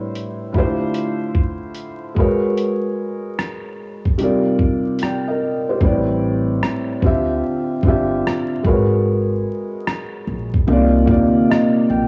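A slow 74 BPM groove in 4/4, swung at 66% on the sixteenths, sets a reflective, melancholic lo-fi hip hop mood in this excerpt, tuned slightly flat to A4 = 437 Hz. A felt-muted upright piano sits up front from the first moment, soft and intimate, carrying the accompaniment through minor eleventh chords that move from Am11 through Dm11, G#m11 and Cm11, with a cassette tape character on its tone. A sampler-style drum kit of hi-hat, kick drum and rim click enters at 0.2 seconds, compressed and muffled with a thumpy kick and vintage 12-bit grit; its hi-hats drop away at 5.8 seconds as the second section begins. At that same point a pizzicato upright bass joins with a woody, dark sound, sitting low in the mix. Moderate spring reverb, small room ambience and vinyl crackle give the whole a homespun, cassette-recorded feel.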